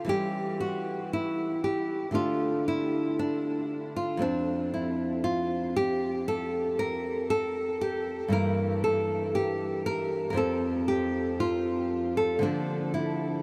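The rhythm moves freely in a rubato 4/4, giving this baroque-style classical dance a flowing yet grave character. A lone nylon-string guitar carries the whole piece, fingerpicked and placed up front, with an acoustic, warm tone that spans from F2 to Bb4. An analog delay trails behind the guitar's notes, and the instrument, tuned to A4 = 439 Hz, sits inside a huge, wet ambient reverb with a 7.8-second decay that soaks the mix in a dreamy haze. The harmony drifts through a diminished C# chord over E, a bare D fifth and F major, then an E diminished chord over G, an F fifth, and finally B-flat over D near 12.4 seconds. Cut from a longer work, the passage lasts about 13.4 seconds.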